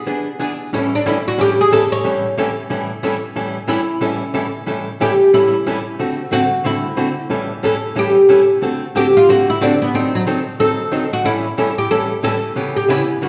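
A swung 4/4 at 182 BPM drives this playful, down-home country piece in A mixolydian, cut from a longer performance, where a woody, plectrum-plucked fretless oud with double strings solos up front from the first moment over a dark, clean, compressed hollow-body archtop guitar playing accompaniment, the pair captured live in one room with a wet large-studio reverb as the changes move from E7 and A7 through D9 and D#dim7 to C#m7b5.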